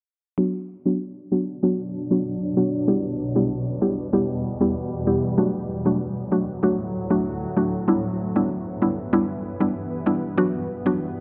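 Tough and sultry, this dancehall fragment pairs a woody, round mallet-like synth pluck with chorus up front from 0.4 s against a cloudy, detuned granular pad that enters at 1.4 s holding sustained chords through Bm, Em, D and G6, while a filter sweep runs throughout and a lush hall reverb and the warbly pitch drift of worn cassette tape colour the recording.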